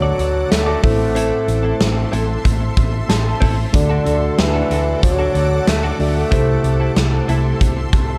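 1980s-style pop at 93 BPM in a straight 4/4, glossy and romantic in mood, heard as a short cut from a longer piece. A soft-attacked bassoon carries the melody in a classical style with delay, stopping at 7.3 seconds, over chords moving from D to Am, back to D and on to C6. A mellow FM electric piano with chorus supplies warbling, vintage accompaniment and adds fills at 2.8 and 7.6 seconds, while a shimmering, ethereal pad holds bright, detuned sustained chords with an octave-up sheen, chorus and its own reverb. A clean, direct-recorded electric guitar plays a compressed, picked riff in the background, dressed in lush chorus and delay. A round, punchy hollow-body bass anchors the low end, and a huge arena drum kit enters at 0.2 seconds with a punchy kick, medium-tuned snare and hi-hat, natural and up front in a big room. The production is dark and warm, with light studio reverb.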